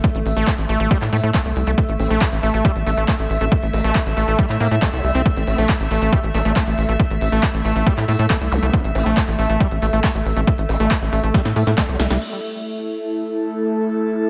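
A straight, driving psychedelic trance groove with an alien mood is built on a punchy, overdriven electronic kick up front and a big-room dance kit of crisp hats, handclaps, snare and crash re-recorded in a large room, while a tight sawtooth sequencer bass pulses underneath, a squelchy, distorted acid bass riff with delay and sidechain pumping cuts through, a nasal, very quiet vowel-sweep wobble bass joins at 2.0 s, a brief electronic zap sounds at 8.5 s, and an evolving, morphing wavetable pad hovers in the background beside an airy, breathy pad, both pumping, until a drum fill and band accent lead at 12.2 s into a closing section where only the two pads remain.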